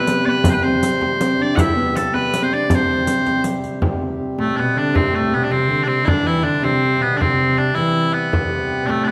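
Piercing bagpipes carry the melody up front from the start, over a dark, woody bowed viola da gamba second line with light vibrato and a reedy, breathing harmonium drone, giving this festive, ancient-sounding medieval dance in a straight 6/8 its character. A riq with dark jingles, close and dry, plays only until 3.7 seconds, while a frame drum struck with hard hands sounds from 0.3 seconds to the end. The tune moves into a new section at 3.8 seconds, all set in a reverberant recital hall in this short cut from a longer piece.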